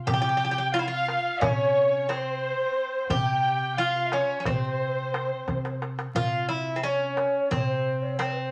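A Turkish makam ensemble piece in 9/8 with a stately, warm mood, cut from a longer work: a brilliant, metallic Greek bouzouki carries the melody up front with its doubled strings, while a breathy, hollow ney with vibrato sits in the background and a dark, bowed violin section with portamento adds a second line until 5.8 seconds. Underneath, a woody, thumpy pizzicato upright bass holds a low C and a clay darbuka plays close and dry, breaking into a drum fill from 5.5 seconds that leads into a new section at 6.2 seconds. The whole is set in a wet studio reverb with a layer of vinyl crackle.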